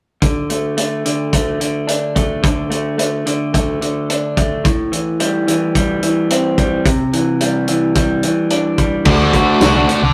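A straight 4/4 pulse at 109 BPM drives this restless, bittersweet indie rock fragment, cut from a longer piece, with a loose drum kit of punchy kick, medium-tuned snare, hi-hat, crash and tambourine sounding mid-forward and rolled-off up front. A dark, slightly broken-up electric guitar through a small old amp plays a picked riff over D5, Am7 and Cadd9 chords. At 9.1 s the harmony lands on D as a bright, thick fuzz guitar riff enters with a round, foam-muted vintage bass, all captured in a rough rehearsal-room recording with moderate reverb.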